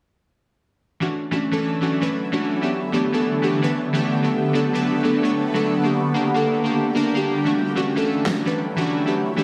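Lush and bright, this future bass excerpt at 149 BPM in D major moves in a swung half-time feel as glassy, airy digital keys with a fast attack and a filter sweep enter at 1.0 seconds, joined at 2.0 seconds by a shimmering, ethereal pad with a slow attack, octave-up shimmer, chorus, phaser and its own reverb, over chords running from Dmaj9 through A9sus4, Bm7 and Gm back to Dmaj9, before a huge, overdriven, up-front electronic snare hits once at 8.3 seconds, all set in a moderate room reverb with a heavily compressed, radio-like sound.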